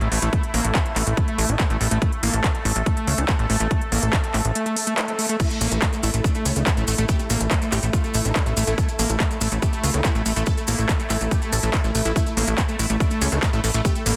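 Intense and alien, this psychedelic trance excerpt is driven by a heavy, tape-warm electronic kick up front and a punchy, funky analog bass, with an overdriven techno kit of smooth hats, handclaps and crash cymbal. Behind them, a squelchy, screaming distorted acid riff with tape echo and a bubbling, resonant stepped-filter pad both pump against the kick, while a background swell around 4.8 seconds leads to a detuned supersaw stab melody with phaser and delay at 5.4 seconds, joined by grainy, saturated maracas. The dense, heavily limited master sits in light digital ambience.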